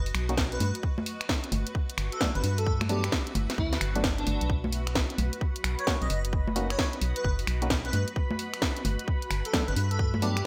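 UK garage in a swung two-step groove with a sunny, soulful mood and bright 1980s-style digital sheen, built on a hollow, dark organ-like FM bass, a tight electronic kick and an up-front garage kit of congas, finger snaps, hi-hat and a cracking snare with gated reverb, while a background percussive organ stab with chorus and digital delay and an airy, dreamy lead with vibrato float over a blurred, evolving granular cloud pad that pumps under the sidechain, joined at 4.8 seconds by a smooth, warbling analog pad of sustained chords.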